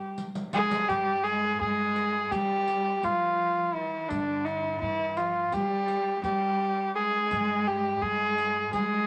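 A rich, nasal kamancheh carries the passionate, stately melody up front with light vibrato and portamento in this Turkish makam ensemble excerpt in G makam hicaz, moving at 168 BPM in 9/8 over a woody pizzicato upright bass, a riq with bright jingles that opens with a fill from 0.2 to 0.9 seconds, and an intense symphonic cello section bowing a second line from 0.5 seconds, all set in moderate studio reverb.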